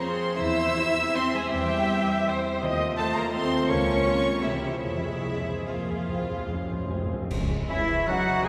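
Dark and bittersweet, this orchestral ballroom waltz sways in a flexible, rubato three, with intimate violin sections carrying the melody and a second line, a vibrato-touched viola section, a shadowy cello section and a double bass section playing soft-attack sul tasto lines over a distant French horn section and a ringing harp's arpeggios. Timpani with calf heads play a fill at 4.9 s, and a close burst of bright clash cymbals and concert bass drum marks a new section at 7.3 s. At 7.7 s an airy, very quiet flute group joins, along with a smooth-topped oboe, a soft bassoon and mellow trumpet stabs from the background, all bathed in a long cathedral reverb.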